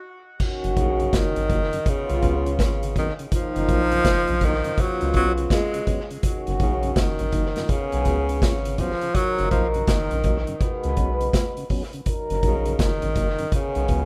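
Laid-back and warm, this roots reggae excerpt settles into a relaxed 82 BPM groove in F# major, swung on the sixteenths and rocking between F#6 and C#7sus4 chords. A vintage acoustic drum kit sits up front with dark cymbals, a punchy kick and a rolled-off top, playing crash, hi-hat, kick and snare from 0.4 seconds on, while a deep, round dub sub bass holds down the low end. Behind them, a mellow tonewheel organ provides background accompaniment, lightly overdriven with chorus vibrato and a slow rotary speaker. A breathy tenor saxophone carries the melody up front with light vibrato and tape echo, entering at 0.8 seconds, as a cup-muted trombone section adds a veiled, loosely played second line, also treated with tape echo. Light reverb and studio ambience give the whole piece the rough feel of a home demo.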